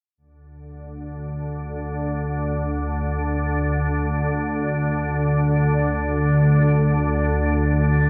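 Dark and cavernous, this brief ambient fragment, cut from a longer piece, drifts in free time with a single organ-like drone as its only voice. The drone enters at 0.8 seconds and holds until the close at 8.1 seconds, sitting low between D2 and D3. Its sine-like tone is calm and detuned, built from unison voices thickened by an ensemble chorus, with a slow attack, long sustain and lingering release. Placed up front, it carries its own built-in reverb and a diffuse ambient delay. The whole sound hangs in a wet, cathedral-like space whose six-second-plus decay makes the room feel vast and echoing.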